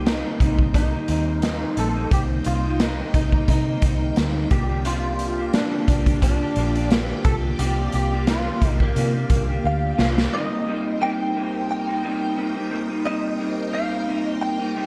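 A dark, hazy small-room sound frames this wistful indie and bedroom-pop excerpt with a gentle swing, where a bright, clean, direct-recorded guitar carries the melody through chorus and slapback echo over a slightly broken-up, warbly guitar played through a small old amp, a swirling phased string machine holds slow-attack chords, and a round, foam-muted fingered bass and a gritty, punchy garage drum kit sit up front until a drum fill at 9.6 s leads the bass and drums to drop out at 10.3 s.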